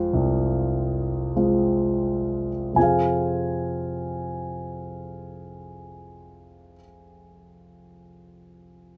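A dark, mellow concert grand piano sits up front with a deep bass, playing a lyrical, reflective classical solo in F minor at a rubato 41-54 BPM in 4/4, slowing down over the first 2.8 seconds before moving into a new section at 2.8 seconds, all in a moderate small-room reverb, in a brief fragment cut from a longer piece.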